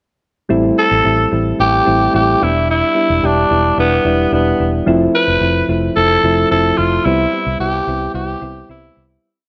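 Soft, mellow electric-piano-like synth keys with chorus play close-voiced eighth-note chords over a dark, punchy, foam-muted fingered bass driving in eighths from 0.5 s. By 0.8 s a raspy, gritty tenor saxophone with delay and light vibrato carries a hook-based melody with scooped notes up front in this dramatic, urgent 1980s-style pop piece in A minor at 110 BPM. It moves from Am7 through Em7 and Fmaj7 to Cmaj7 in a lush hall reverb before fading out from 7.1 s.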